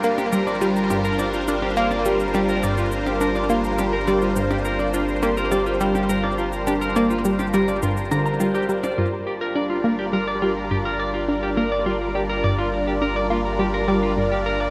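Ambient, sequencer-driven space music at 104 BPM in G minor, mysterious and hypnotic, where a lush, detuned unison pad with chorus and phaser holds bright sustained chords up front over a deep, dark analog bass on G1, while a wave-folded sawtooth pluck with chorus and delay repeats its riff, a clean picked electric guitar with delay traces arpeggios, and overdriven electronic shaker and percussion blips run until 9.0 s, when a filter sweep begins on the pluck, all bathed in a wet plate reverb.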